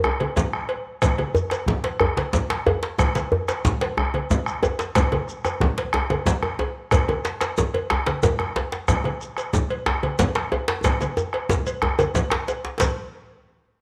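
Powerful and earthy, this West African traditional drum ensemble moves forward in a straight 12/8 pulse, driven by a deep, dark bombo set up front with a distant, roomy sound alongside two tight, cracking djembes. Bright, thin-skinned congas with a damped, low-tuned tone and a compressed, saturated edge sit beside a metallic cowbell and a grainy, mellow shekere kept close and dry, all carried by a moderate echo chamber reverb. A drum fill runs from 10.8 to 12.8 seconds before the pattern shifts into a brief new section, as this fragment of a longer piece comes to a close.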